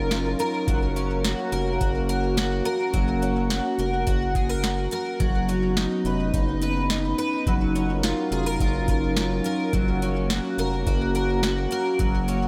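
A moderate concert-hall reverb with a 2.4-second decay lends this short dream pop excerpt an airy, ethereal sense of space. At 106 BPM in a straight 4/4, in F# major and tuned to A4 = 441 Hz, it drifts through a dreamy progression of C#6, F#, Badd9 and back to C#6 and F#. A picked twelve-string acoustic guitar sits up front, its bright, octave-doubled arpeggios shimmering through analog chorus and digital delay, with a woody, full-bodied tone from old strings. Beneath it, a warbling, tape-like pad holds sustained chords with a nostalgic, lo-fi, vintage character, softened by chorus and its own built-in reverb. A round analog bass anchors the low end with a deep, slightly nasal tone. A booming analog drum machine runs from 0.1 to 12.4 seconds, its deep kick, crisp snare and metallic hats roughened by overdrive and carrying the grit of a small room.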